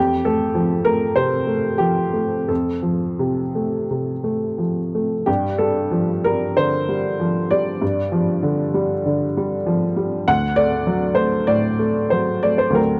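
Neoclassical minimalist piano in G minor, intimate and reflective, moving with a rubato feel somewhere between 85 and 102 BPM in 4/4, tuned to A4 = 439 Hz. A solo upright piano plays throughout the 13.0 seconds, ranging from D2 to F#5, its tone clear, worn and woody, slightly detuned, with short sustain and sitting up front. The dry, close sound of a 1970s-style studio frames this brief cut from a longer piece, where a phrase heard first returns at 5.3 seconds, and the harmony shifts from F to G5 and then to D7 at 10.3 seconds.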